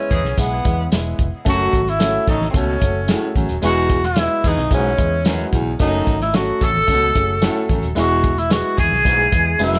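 A warm tenor saxophone with subtone, vibrato and scooped notes leads this passionate, driving stretch of uptempo 1960s-style soul at 111 BPM, sitting up front with tape echo over a soft-attack saxophone section in the background, a woody upright piano, and a dark, foam-muted, round and punchy fingered bass. A tight soul drum kit with a rolled-off top and a pumping room sound drives the groove alongside a jingly tambourine, while a raspy, gritty baritone saxophone riff and very quiet, ringing high-tuned congas join at 1.5 s. The harmony alternates between E and F#m in a moderate studio reverb, and a drum fill at 9.6 s closes this section cut from a longer piece.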